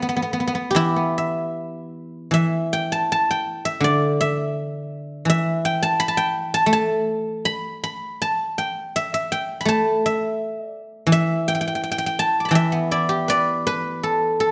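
A solo guzheng, played with fingerpicks and placed up front, carries this fragment of Chinese traditional music from 0.0 to 14.5 seconds, its silvery, ringing tone spanning D3 to D6. The feel is rubato over a 2/4 metre, and the mood is longing and contemplative, with a short opening passage giving way at 2.3 seconds to a longer second section. Light reverb surrounds the bright acoustic strings, and the recording is cut from a longer piece.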